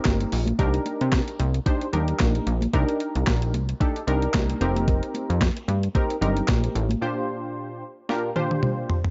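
Early-eighties boogie funk in C minor at 112 BPM, this short, funky and danceable cut rides a swung sixteenth-note feel. A crisp, overdriven 8-bit drum machine sits up front with a thumpy kick, a medium-tuned snare, handclaps, hi-hat and toms. A plucky analog bass with a sawtooth, square-wave and ring-modulated tone, saturated and decaying, punches along beside it, while high-tuned congas with a thick-skinned, vintage character sit in the background. A detuned polysynth comp with chorus, a filter pluck and a fast attack moves from a rootless F9sus4 through Cm7 and back, landing on Bb69 at 7.0 seconds, where the bass and congas drop out for a break that ends in a drum fill at 8.1 seconds. The production is dark and dry, with little reverb and its top end rolled off.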